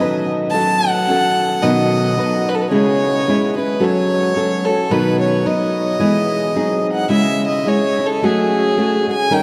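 Drenched in a huge, echoing reverb that suggests a vast space, this dramatic and passionate mariachi excerpt in a lilting swung 2/4 pairs a single bowed violin, pure and floating with a soft sul tasto attack, singing the melody over an up-front fingerpicked flamenco guitar whose finger squeaks are audible as it moves through its chord changes before shifting into a new section at 7.1 seconds.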